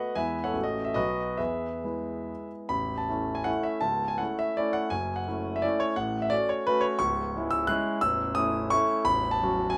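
Rustic and proud, this short classical fragment of a romantic triple-time dance in A major is played by a solo concert grand piano at a flexible 129-184 BPM with rubato and dotted rhythms, its intimate, up-front tone marked by audible action noise, deep bass and long sustain in a light reverb, with a new section beginning at 2.7 seconds.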